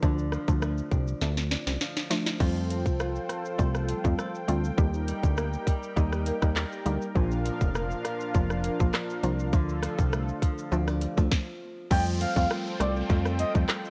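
Bouncy and tough, this dancehall cut rides a tight, sharp electronic drum kit with handclaps, rim clicks and shaker, roughened by vintage 12-bit sampler grit, under a punchy, funky analog bass and a woody, round mallet-like synth pluck with chorus and sidechain pumping. A fingerpicked flamenco guitar with audible finger squeak sits in the background through tape echo, and a smooth, detuned analog pad joins at 2.4 s after a drum fill. Following a brief stop, a breathy flute-like synth lead with vibrato and an electronic downlifter arrive at 11.9 s, with the mix carrying the warbly pitch drift of worn cassette tape.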